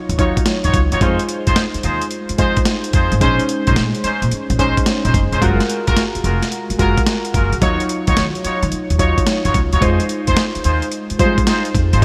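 A swung, bouncy new jack swing groove drives this confident R&B excerpt, built on a gritty, overdriven sampler-style drum kit with a thumpy kick and medium-tuned snare sitting up front, while a woody, dark pizzicato upright bass moves beneath it. Round analog keys with a pulse and sawtooth character, filter sweeps and chorus carry the accompaniment through Ebm9, Fm7, Bbm11 and Gbmaj9 chords, and a mellow, vintage horn section adds jazz-style stabs with light vibrato and digital delay from 0.2 seconds. The bright 1980s-style digital production wraps the parts in light reverb and digital ambience.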